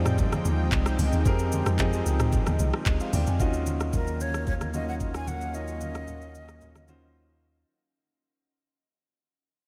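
Soulful and deep, this amapiano excerpt moves at 112 BPM in Eb dorian, opening on a dropped-in groove where a round, dark log drum bass thumps under a warm concert grand piano, a lush, detuned sawtooth pad with chorus and sidechain pumping, a smooth R&B kit of knocking kick, metallic hats, handclaps, rim click, shaker and toms, and distant, low-tuned congas. At 3.4 seconds the harmony shifts from Fm7 to Ebm7 as the log drum gives way to a thick, saturated sub bass and the music begins to fade out, with a breathy, vibrato-laden jazz flute, treated with tape echo, entering at 3.9 seconds. A huge ambient reverb soaks the whole mix in a dreamy haze before a short break closes it.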